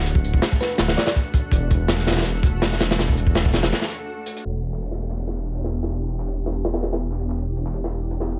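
A crunchy, saturated breakbeat kit drives this dark, nostalgic drum and bass and jungle excerpt at 164 BPM in E minor, sitting up front with a tight kick and gritty, rolled-off top, alongside a thick, menacing detuned saw bass and a cloudy granular pad holding sustained chords over a shift from D to Em7. A glassy, drifting harmonics texture floats in the background until 4.5 s, while a sparkling, bell-like FM electric piano with chorus, phaser and dub echo flickers briefly near the start. After a break at 3.7 s, a filter sweep opens the second half at 4.5 s, where a compressed, overdriven sampler-style kit and a faint electronic downlifter join far in the background of a dry, low-passed mix.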